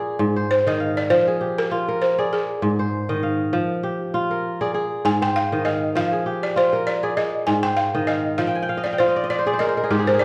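A bright, ringing kora opens this short passage of West African string and xylophone music, its fingerpicked arpeggios crisp and up front across a span from low to high register. Half a second in, the balafon joins with the melody, its rubber mallets drawing a woody, buzzing tone that sounds dry and airy beside the strings. The mood is hypnotic and reflective, carried by a lightly swung sixteenth-note feel and a harmony that circles between A-flat and F minor. Near the close, at 8.5 seconds, the kora breaks into a fill that carries through to the end. Both instruments sit in a wet recital-hall reverb, lending the piece the spacious air of a church or concert hall, as if cut from a longer performance.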